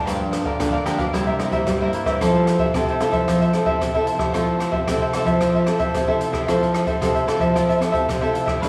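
Samba and choro at 112 BPM in F major, a lively, festive excerpt cut from a longer piece, where a crisp, up-front picked cavaquinho and a full-bodied fingerpicked nylon-string guitar with audible finger squeak share the accompaniment over a deep, fresh-stringed nylon-string guitar bass line, while an open jazz drum kit with a boomy kick, hi-hat and rim click joins at 0.1 seconds, all moving through Gm7, C7 and Fmaj7 inside a wet church reverb.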